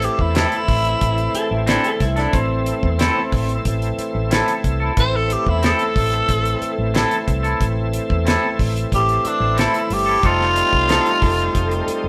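A raspy, growling tenor saxophone leads this smoky, soulful straight-eighth soul blues in A minor at 91 BPM from the first moment, over a shouting tonewheel organ with light overdrive, chorus vibrato, key click and a slow rotary speaker, a round, foam-muted fingered bass, and a dry 70s drum kit with a fat snare and tight kick. A clean, twangy electric guitar adds stabs from 0.3 s, and a slightly broken-up slide guitar plays a second line from 1.4 to 3.6 s, returning at 11.2 s just after the harmony moves from A minor to F7. The band sounds as if it is playing live together in a stone room with moderate reverb, in a short cut from a longer piece.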